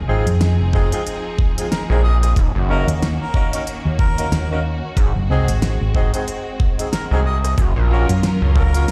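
Gritty and funky, this glitch hop excerpt rides a swung sixteenth-note groove that moves through minor seventh chords and a dominant seventh before settling on a major seventh. A hollow-body short-scale electric bass, dark, round and tube-saturated, starts at once, and at 1.9 seconds a snarling, wave-folded synth bass with a fast, resonant filter pluck joins it at the front of the mix. A knocking electronic kick sits up front beside a tape-warm pop kit of fat snare, rim click and crisp hats. Distant, biting strings hold lush bowed chords and mellow horns punch out soft-edged stabs in octaves, both roughened by vintage 12-bit sampler grit and sidechain pumping, with dub echo trailing the horns. From 1.7 seconds a harmonica with light vibrato carries the solo line through its own dub echo. The whole piece sounds as if played over a big sound system in a bare room, with a large studio reverb.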